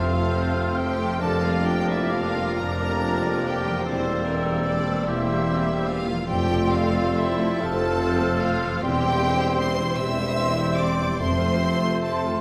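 A slow, rubato lilt in six-eight carries this tender orchestral passage, cut from a longer classical piece, where a clear, distant chamber violin section sings the melody with vibrato above flutes, oboe, clarinet and a lush symphonic violin section weaving soft second lines in the background. Bassoon and focused violas fill the middle, mellow French horns hold sustained chords, a ringing concert harp plays quiet arpeggios, and a warm trumpet adds stabs, while cellos, double basses and tuba anchor the bass. Hard-mallet timpani enter at 11.2 seconds as the harmony settles home, and the whole ensemble sits in a wet, spacious scoring-stage reverb.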